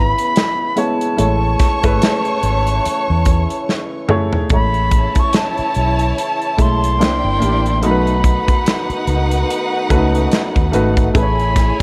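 Romantic and lush, this fragment of 1970s-style soul sways with a gentle swing as a pure, vibrato-laden silver flute carries the melody with a soft attack over a distant, bowed violin section playing a second line. A baby grand piano with audible action noise and short sustain supplies the accompaniment, while a mellow French horn section holds sustained chords in the background. Up front, a dark, foam-muted fingered electric bass and an acoustic drum kit with a punchy kick anchor the groove, the drums entering at 0.2 seconds and playing a fill from 3.7 to 4.5 seconds as the harmony moves from C#m7 to Amaj7, all set in a small room ambience.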